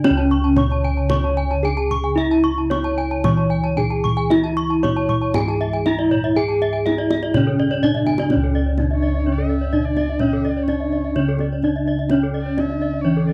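A dark, smooth bronze metallophone carries the melody through this brilliant, hypnotic Balinese gamelan excerpt in C# pelog at 113-127 BPM in a straight 4/4, with shimmering beats from its paired tuning, while two more bronze metallophones ring out bright arpeggios (one airy and touched with tape echo), round, mellow bossed gongs sit up front in the bass with a boxy small-room character, a tight kendang played with soft hands sounds distant in a large room and adds a drum fill at 7.8 seconds leading into a new section at 8.3 seconds, and from 9.0 seconds a single bowed erhu joins as a low-level second line with woody tone, vibrato and portamento, all within a dry, close 1970s-style studio sound with light reverb.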